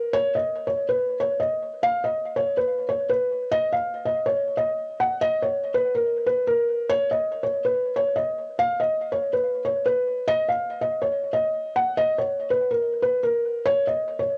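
Hip hop in Eb minor, this short piece, cut from a longer work, carries a menacing, hard-hitting mood at 142 BPM in 4/4 with a half-time feel. A felt-muted upright piano plays solo for the whole 14.4 seconds, sitting up front in a range between Bb4 and Gb5. Its tone is soft, mellow and intimate, with audible action noise adding a natural, close-up texture. Light reverb surrounds the piano, and the home cassette recording lends the sound a homespun character. Around 12.0 seconds the music moves into a new section that runs to the end of the clip.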